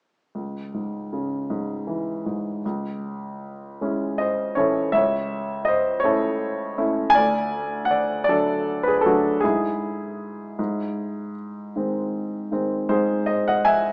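Heard through a small-speaker sound in a moderate recital-hall reverb, this fragment of a longer classical piece features a solo concert grand piano, up front with deep bass and short sustain, playing a reflective, melancholic lyrical line in a rubato 6/8 from 0.3 to 13.9 seconds, with a brief opening idea giving way to a second section at 2.6 seconds.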